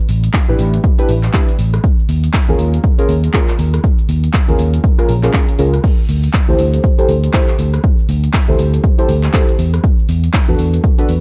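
A dark, dry mix with little reverb frames this smooth, deep house cut from a longer piece, its swung sixteenths carried by a layered, overdriven kick and an analog drum machine re-recorded in a small room, with cabasa, handclaps, hi-hat, rim click and crash cymbal. Up front, an amped, fingered electric bass pumps against the sidechain, while a soft, nasal chord stab with a sub octave, fast attack and decaying tail is thickened by chorus and tape echo, pumps along with the bass and moves through a filter sweep. Those stabs outline a chain of suspended ninth chords, A9sus4, Eb9sus4, D9sus4 and E9sus4, which gives the groove a mellow, hovering warmth.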